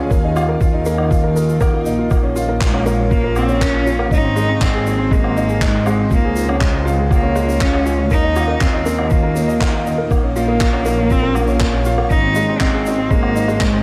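Piano and strings electronica in Bb minor at 120 BPM, this melancholic, moving excerpt from a longer piece sets a woody upright piano riff with tape echo over a very quiet, blurred granular cloud pad and an earthy, bowed chamber double bass section that pumps with sidechain compression. A muffled, thumpy electronic kick drives a straight 4/4 pulse, with distant, roomy shaker, woodblock and handclaps behind it, while a focused solo cello with vibrato and tape echo carries the melody from 2.6 seconds. The chords cycle through Ebsus2, Bbm, Ab and Db in a dry, close mix.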